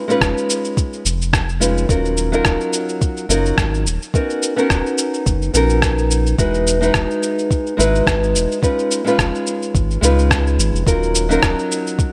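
Wistful and relaxed, this sunset chillout excerpt moves at 107 BPM in 4/4 with a light sixteenth-note swing, sitting in Eb minor with tuning slightly below standard pitch. A dark, small-sounding nylon-string guitar, fingerpicked and up front with tape echo, carries the accompaniment from the first moment, moving through chords such as Db7/F, Ebm9, Bmaj9/D# and Emaj7. Beneath it, a round analog bass blends sawtooth and sine tones into a deep, sustained low end with a fast attack, entering at 0.2 seconds and falling away at 11.6 seconds. The drums pair a soft, tape-warm electronic kick with a gritty, compressed cabasa and rim click that sound sampled and re-recorded in a small room, placed close to the listener. Light reverb surrounds the mix, and near the end, at 10.9 seconds, the harmony settles back onto Ebm9 as a brief new section begins.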